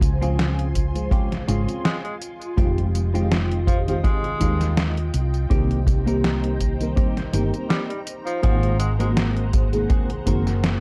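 A hazy, nostalgic vaporwave groove in F minor opens at 82 BPM with a lightly swung 4/4 feel: a dreamy, chorused FM electric piano with a soft pad layer and tape echo, a silky phased string machine, a growly, up-front fretless bass, a detuned 8-bit drum machine of hi-hat, snare and tambourine, and a boomy, natural kick, with a clean, compressed electric guitar riff drenched in lush chorus arriving at 0.2 s. A clear tenor saxophone carries the melody with vibrato from 1.8 to 9.1 s, its tone roughened by vintage 12-bit sampler grit and tape echo, over chords moving from Dbmaj7 through Fm9 and Cm7 to Ab9. The production is dark and cassette-tinted, and this short excerpt is cut from a longer piece.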